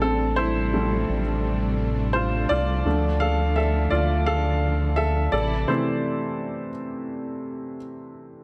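Pop in D minor at 85 BPM, this brief excerpt carries an earnest, dramatic mood over a straight 4/4 pulse. A clear upright piano leads the accompaniment, its woody tone intimate and up front with audible action noise. A lush studio string section holds sustained bowed chords with vibrato, while a round analog bass sits deep and dark beneath, its sawtooth, sine and triangle tones detuned with a fast attack. The strings and bass stop at 5.7 seconds, leaving the piano alone until the end at 8.4 seconds. The harmony moves from Fadd9/A to Dm at 2.9 seconds and on to Am, all set in light reverb with a small room ambience.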